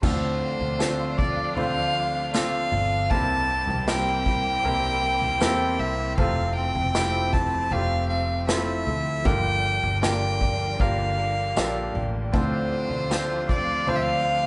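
A wet, reverberant live-room sound with a rolled-off top carries this melancholic, emotional pop ballad in D minor at 78 BPM, where an up-front, sul tasto violin floats a pure, bowed melody over a clear, present baby grand piano, a lush background string section with intense vibrato, a very quiet fingerpicked steel-string guitar with bright fresh strings and finger squeak, a dark, round, foam-muted electric bass, an airy small-room drum kit played with bundle sticks that drops out at 14.1 seconds, and a jingly tambourine entering at 0.8 seconds, all moving through Dm7, C7, Fmaj7 and Gm7 in this excerpt from a longer piece.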